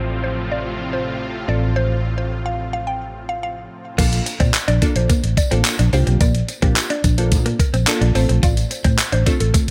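A dry dance-pop clip, carefree and upbeat at 108 BPM in Bb major, opens with a woody, mellow FM mallet-like synth pluck carrying the melody through chorus, phaser and delay. Beneath it sit crisp, detuned wavetable chord stabs, a bright supersaw pad and a dark, round, foam-muted fingered electric bass, each pumping with the sidechain. At 4.0 seconds the drop arrives on a Bbmaj7 chord: the pad has fallen away, and a thumpy, tape-tinged 8-bit drum machine enters up front with crash, handclaps and hi-hat, joined by a jingly background tambourine and a clean, compressed electric guitar riff in lush chorus.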